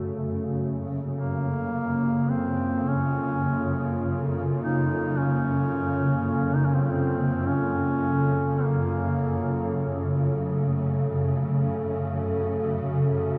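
A mellow duduk carries the melody in a folk style from 1.1 to 9.8 seconds, its scooped notes and smooth top sitting up front and trailed by delay. Beneath it, a swarming drone runs through the whole 13.4 seconds, also up front: detuned sine and sawtooth voices in unison with ring modulation and a granular texture give it a tense, evolving character, with its own built-in reverb and long release. A deep, moody analog pad holds sustained chords, blending square, sawtooth and triangle waves with a sub octave, its slow attack colored by chorus and phaser. The harmony moves between F#m and A#m chords before returning to F#m as the duduk falls silent. Cut from a longer piece, this dark ambient drone is bathed in a huge, wet reverb with a long tail and a dark, warm production, leaving a cavernous, unsettling mood.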